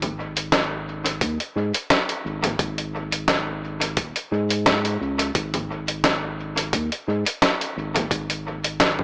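A slow 87 BPM groove in 4/4, with a light swing on the 16ths, opens this spacious, meditative ambient dub excerpt. A lo-fi, sampler-style kit of congas, hi-hat and a medium-tuned snare sits up front, compressed, pitched down, muffled and tape-warm, and it is dressed in studio reverb and dub echo. At 0.5 s an electronic kick joins, a squashed, thumpy sampled hit with its own studio reverb. Underneath, a round analog bass blends sawtooth and sine tones into a deep, dark line between D#1 and G#2, with fast attacks, sustained notes and tube saturation, placed forward in the mix. A moderate spring reverb with a 2.5-second tail and a small-speaker sound give the whole recording a hazy, boxy character.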